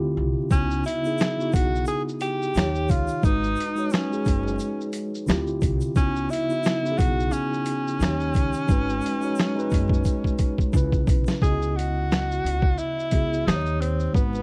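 A gently swung, compressed boom bap drum kit with a thumpy kick, medium-tuned snare, hi-hat, shaker and finger snaps sets a reflective, melancholic lo-fi hip hop groove, joined by a faint, grainy tube shaker in the background and a drum fill at 10.1 seconds. A woody pizzicato upright bass and a mellow, up-front tine electric piano with cassette-tape colour lay down jazzy minor-seventh and eleventh chords. A breathy tenor saxophone solo floats on top with vibrato and scooped notes, all under light reverb and a bed of vinyl crackle.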